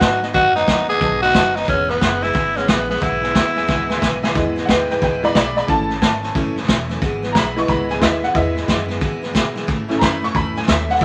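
A raspy, growling tenor saxophone carries the melody up front over a jangly tack piano, a bright dreadnought acoustic guitar, a woody pizzicato upright bass and a gritty, saturated vintage drum kit, all swinging at a rowdy, rollicking 180 BPM in E major. At 3.7 s the drums and the piano both break into fills. The saxophone drops out at 4.2 s, and from 4.3 s the piano takes a honky-tonk solo while the guitar and the thumpy bass sit in the background, all within a moderate studio reverb and a bed of vinyl crackle.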